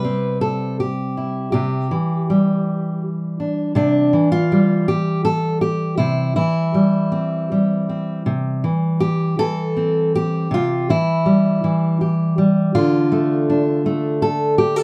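Folk piece for solo fingerstyle acoustic guitar, pastoral and peaceful, moving at an unhurried 81 BPM in a straight 3/4 and set in C major with tuning slightly below standard pitch. A single fingerpicked steel-string acoustic guitar carries the whole fragment, sitting up front with an auditorium-bodied, warm tone and ranging from C3 to B4. The harmony rests on C for most of its length before shifting to Dm at 12.7 seconds. The music falls into two parts, an opening passage and a second section beginning at 8.3 seconds. A moderate studio ambience gives the guitar a touch of air around it. This short clip, cut from a longer piece, runs about 14.8 seconds.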